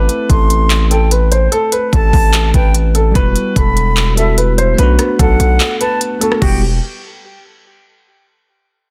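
Eerie and hard-hitting, this half-time trap cut sets a dark, mellow grand piano melody with delay over a bell-like electric piano washed in phaser, an airy, vibrato-laden flute line echoing through delay from 0.3 seconds, a saturated, up-front 808 bass, and an overdriven trap kit of knocking kick, crisp hats, handclaps, rim clicks and crash, all dry and densely limited, as the chords move from Am through Emadd9 and Bm7 ahead of a break at 5.6 seconds.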